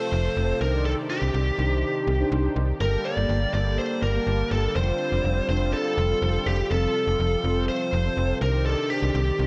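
A straight 4/4 pulse drives this nocturnal synth-pop passage, cut from a longer piece, with a snappy, metallic slap-like FM bass arriving up front at 0.1 s as the chords move from F through Cmadd9, Gmadd9 and Dm7/F. Over it, a biting overdriven electric lead guitar carries the melody, while a round, mellow synth brass with chorus and a filter sweep supplies accompaniment, and a warbling, detuned vintage analog pad holds sustained chords with vibrato. A very quiet electronic downlifter sounds only in the opening 2.8 seconds, and a lush hall reverb wraps the dark, warm production.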